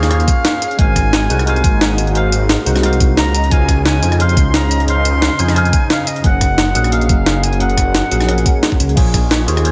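Melancholic and rolling, this short cut from a longer liquid drum and bass track moves with a light swing on its sixteenths. A bright, reedy jazz flute carries the melody with airy vibrato and a soft attack, its line trailed by delay until it falls away at 8.6 seconds. Underneath, a worn, slightly out-of-tune electric piano runs through a lightly overdriven combo amp with phaser and delay, over a glassy FM pad that sits very quiet and ethereal in the background. An up-front detuned saw bass swells with a menacing, saturated edge. A gritty, pitched-up jungle sampler-style kit with crash, hi-hat, rim click, snare and tambourine drives the groove, joined by a knocking electronic kick from 0.3 to 9.2 seconds, all set in a dreamy, reverb-soaked mix that drifts from Bbm7 through Dbmaj9 and Gbmaj7.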